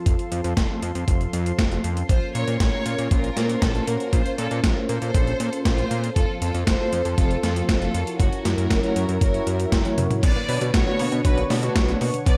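A straight italo disco groove is driven by a gritty, overdriven, thumpy electronic kick and a dusty sampler-style kit of snare, hi-hat, toms and crash in gated reverb, over a fat, detuned sawtooth bass. Beneath a filter sweep, a lush, vintage unison pad holds sustained chords in the background while dark, round synth brass adds chorused stabs with a cassette-tape tinge. A rich symphonic violin section carries the nostalgic, bittersweet melody with tape echo from 2.1 seconds, and after a band accent at 9.7 seconds and a drum fill from 9.8 seconds a very quiet, warbly lo-fi pluck arpeggiates from 10.2 seconds in this brief cut from a longer piece.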